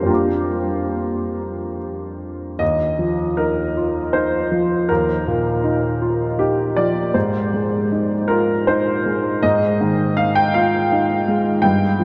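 In a rubato 3/4 that drifts between 69 and 83 BPM, this short excerpt of neoclassical minimalist piano settles into Eb major with an intimate, peaceful mood. A solo upright piano, woody, worn and slightly detuned yet clear and up front, spans Eb2 to D6 with long sustain and a slapback echo, moving from Bb6/F through Ebsus2 at 2.6 seconds to Ab at 7.1 seconds. A huge, wet ambient reverb places it in a vast, echoing space.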